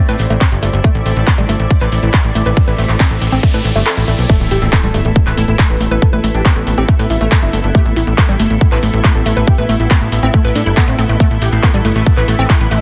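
A distorted, overdriven electronic kick sits up front and drives this excerpt of psychedelic trance in straight 4/4, with a driving, alien mood. Beside it, a punchy, funky analog bass with a fast filter pluck and tube saturation carries the low end, while an overdriven techno kit adds crash, handclaps and hi-hat. In the background, a woody, wave-folded pluck plays a chorused riff with tape echo, over a bubbling texture of resonant, randomly stepping filter chords and a blurred, evolving granular cloud pad, all three pumping against the kick. An electronic riser builds from 2.7 seconds, the kick drops out at 3.9, and at 4.3 seconds the drop lands with an impact. There a thick, detuned unison lead with vibrato, phaser and delay takes the melody, and from 4.6 seconds a very quiet, metallic FM wobble bass adds a second line in brief bursts. The dense, heavily limited master keeps the room light.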